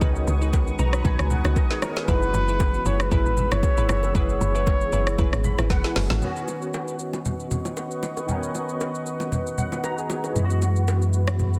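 This amapiano cut, taken from a longer piece, moves at 116 BPM in C# minor with a lightly swung 16th feel and a soulful, late-night mood. A deep house drum kit sits up front with a deep kick, woody snare, smooth hats, rim click and shaker, roughened by vintage 12-bit sampler grit. Soft-handed congas and bongos sit in the background. A punchy, FM-flavoured log drum bass carries the low end until 6.2 seconds, and a round sine sub bass arrives at 10.4 seconds. A barky tine electric piano through a combo amp plays chorused accompaniment and adds fills, over a moody, evolving pad of detuned sawtooths with a sub octave that pumps with sidechain compression under its own reverb. Crystalline wavetable plucks stab through chorus and digital delay, while a bucket-muted trumpet with breathy, whispered tone and light vibrato sings a short, intimate solo line from 2.1 seconds, shadowed by delay, all within a dense, heavily limited modern master.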